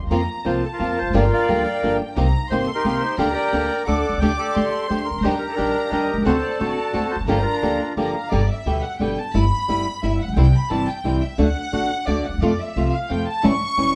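A rubato 3/4 pulse at 176 BPM drives this dramatic, tense tango fragment in G minor, anchored by a thumpy, woody pizzicato upright bass and an up-front flamenco guitar whose fingerpicked chords carry audible finger squeak. A reedy, smooth bandoneon sings the melody until 7.9 s, while a lush symphonic string section adds very quiet bowed stabs and a distant, dark violin section with soft-attack vibrato holds a second line. At 8.3 s the music turns to G major and the violins take a solo over the bass and guitar, all heard as a band playing live in one room with moderate reverb.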